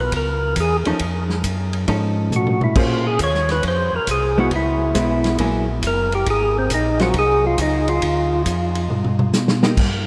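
Heard through a vast, echoing cathedral reverb, this short soul jazz organ trio cut swings at 137 BPM in 4/4, with a greasy, swinging mood. Up front, a fat, lightly overdriven tonewheel organ with percussive third-harmonic attack, vibrato and a slow rotary speaker carries the melody as a solo until 8.4 seconds. Beneath it, a second tonewheel organ plays the bass line in a mellow, round, dark tone, clean but for its key click, also turning through a slow rotary speaker. A distant, roomy soul drum kit with dark cymbals, a medium-tuned snare and a tight kick plays across crash, hi-hat, kick, ride, snare and toms, with a fill at 2.3 seconds and another running from 8.9 to 9.8 seconds. A picked, compressed hollow-body electric guitar in a clean, shadowy tone comps quietly in the background. The harmony moves through rich minor ninth and altered dominant chords, from Dbm9 and F7alt through Bbm9, Gb9 and Ab69, before settling on Dm and G.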